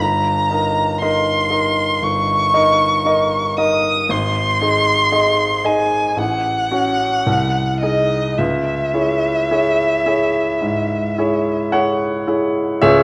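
A single bowed violin leads this elegiac, solemn romantic duo, singing a rich, expressive melody with vibrato and portamento before falling silent at 11.7 s. Beneath it, a clear, intimate baby grand piano supplies the accompaniment with long sustain and audible action noise, moving from D#7/G through G#, F#m/A and G#7/B# to C#m and carrying on alone until 13.0 s. Cut from a longer piece, the music unfolds in 4/4 at a slow, rubato 53-60 BPM, tuned to A4 = 442 Hz, with a dark production set in moderate recital-hall reverb.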